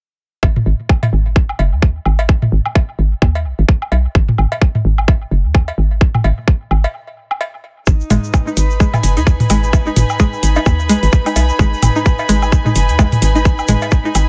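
A swung 4/4 pulse at 129 BPM drives this sparse, cool minimal techno cut in G# minor, where a tight, up-front kick and tape-echoed electronic cowbell, toms and woodblock sit alongside a hollow, bouncy FM bass with sidechain pumping and a filter sweep that runs through a break at 6.9 seconds, after which a grainy egg shaker and an intimate, bowed chamber string section with light vibrato enter at 7.9 seconds, joined moments later by a twangy, bright resonator pluck riff with chorus and tape echo and dry, metallic, low-pass-filtered hi-hats.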